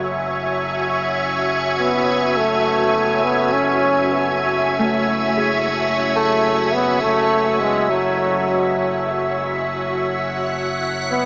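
Heard through a small-speaker sound soaked in a huge, wet ambient reverb, this meditative, spacious ambient fragment is cut from a longer piece and sits in F# minor at 103 BPM in 4/4, with a light swing on the 16ths. An organ-like additive pad sustains an F#m7 chord throughout, its pure, bright, detuned tone sitting up front with ensemble chorus and its own reverb. Beneath it, a soft dub sub bass holds a deep, round F#1, while a breathy, wind-like tuned noise texture hovers dark and airy in the background on E5. A warm, classical-style solo trombone carries the melody from 1.8 s, set in a dub echo. A thumb-plucked Celtic harp, very quiet and ringing, adds acoustic arpeggios from 4.8 s to 10.1 s.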